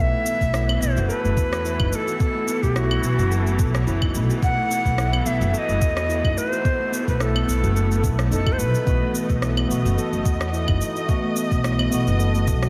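Meditative and mystical, this organic downtempo excerpt sets a breathy, up-front Native American-style cedar flute with delay over a ringing handpan's arpeggios, distant bowed strings and a woody pizzicato upright bass, both pumping, all driven by a soft electronic kick with cabasa, rim click and claves, while a barky tine electric piano with 12-bit sampler grit slips in at 8.8 seconds just before the flute falls silent at 9.1 seconds, inside a lush hall reverb and bright 1980s-style digital production.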